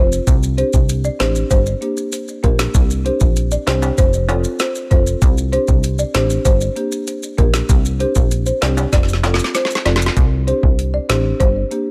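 Dancehall at 97 BPM in a bouncy, tough 4/4 groove, this short excerpt pairs a dry, rustic folk marimba melody with delay over a rosewood marimba accompaniment that pumps with sidechain, a punchy, funky analog bass with a fast plucked attack and ring-modulated edge, ringing close-miked maracas and timbales, and an up-front electronic island pop kit of knocking kick, woody snare, metallic hi-hats and finger snaps that plays a fill from 8.9 to 10.2 seconds, all moving through Csus2, Gm and F in a small room.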